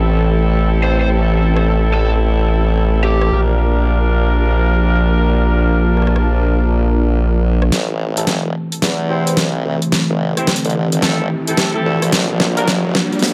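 Glitch hop at 109 BPM in A phrygian, gritty and playful with a swung 16th feel, cut from a longer piece: a smooth, detuned analog pad sustains Am7 and Bb6 chords under filter sweeps while a wobbling formant-sweep bass, saturated and compressed, sits up front beside mellow, vintage jazz-style horn stabs treated with low-pass filtering and digital delay. A dark, overdriven lead guitar plays a brief picked melody from 0.8 to 3.4 seconds, and a layered dubstep kit with a deep snare, bright hats and rim clicks enters at 1.6 seconds. The second half builds with a drum fill, a filter sweep on the horns and a background riser from 9.5 seconds, all in a dark production with light digital ambience.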